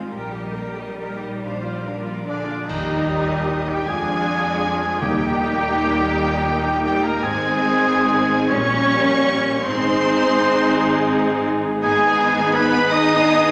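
Bathed in the wet reverb of a scoring stage, this tender, lyrical excerpt from a slow romantic orchestral movement in a rubato 6/8 opens with a lush, focused violin section carrying the melody over a very quiet, dark second violin line with portamento, an expressive viola section, a soft-attacked cello section and a rich, even double bass section, while a very quiet concert harp rings out bright arpeggios and a cymbal swell with clash cymbals and concert bass drum sits in the background. At 2.3 seconds a distant, roomy oboe, a dark, very quiet clarinet and a mellow, hollow silver flute with airy vibrato add second lines, and at 2.7 seconds a band accent brings in sustained chords from a dark French horn section and a tight trombone section, with soft stabs from a dark trumpet. Hard-mallet timpani strike articulately at 5.0 seconds as the harmony drifts through diminished colors to a closing minor chord.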